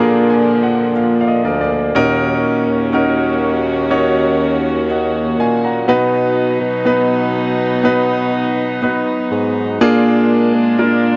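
A grand piano fill opens this slow, longing pop ballad in Eb minor at 61 BPM, with the intimate, up-front piano, its action noise audible and its sustain long, carrying the accompaniment over a floating, sul tasto string section holding soft-attack chords and a dark bassoon with light vibrato on the bass line, set in a dry, close 1970s-style studio sound with light reverb.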